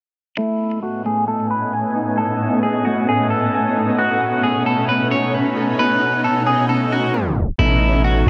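Hip hop in a dreamy, blissful half-time feel at 133 BPM in A lydian, this excerpt from a longer piece opens at 0.4 seconds with a twangy, slightly broken-up electric guitar melody through phaser, delay and low-pass filter beside ringing, fingerpicked Celtic harp arpeggios set in the background, joined at 0.9 seconds by a shimmering, ethereal pad of detuned chords with octave-up shimmer and chorus, all moving from Amaj9#11 to B9 under a filter sweep and a huge ambient reverb until a tape stop gives way at 7.6 seconds to a deep, mellow sine 808-style bass on an Aadd9 chord.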